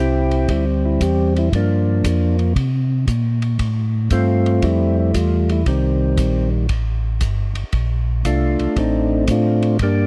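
A dry, close 1970s-style studio sound frames this bluesy, swinging soul jazz organ trio excerpt at 116 BPM in 4/4, where a percussive tonewheel organ with third harmonic percussion, key click and slow rotary speaker carries the melody over a mellow, round tonewheel organ bass coloured by chorus vibrato and slow rotary, both sitting up front, while a dark, smooth acoustic soul drum kit with a tight kick, hi-hat and a dark ride cymbal enters at 0.3 s beneath them as the harmony moves from Am7 through Fmaj9 to Bbmaj9.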